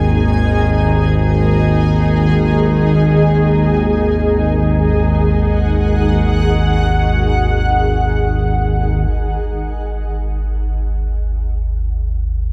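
A blurred, detuned granular cloud pad fades in over a warbling, sawtooth-edged analog drone with chorus in this unsettling, desolate dark ambient piece in free time, both sustained up front in a wet spring reverb, until the pad stops at 9.1 seconds and a filter sweep passes over the low drone alone through to 12.5 seconds, where this fragment of a longer piece ends.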